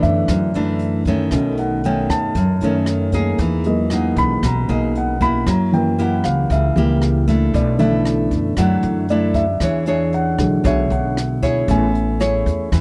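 Bossa nova in B minor at 116 BPM, sunny and relaxed, where a dark, mellow grand piano solos through the entire 12.8-second cut over an up-front, full-bodied fingerpicked nylon-string guitar with audible finger squeak, a woody, growly pizzicato upright bass and a brushed jazz kit with a boomy kick, hi-hat and rim click, moving through chords from Bm11 and Emaj9#11 to F#7b9, E13 and Amaj7 in a dry, close 1970s-style studio sound with light reverb.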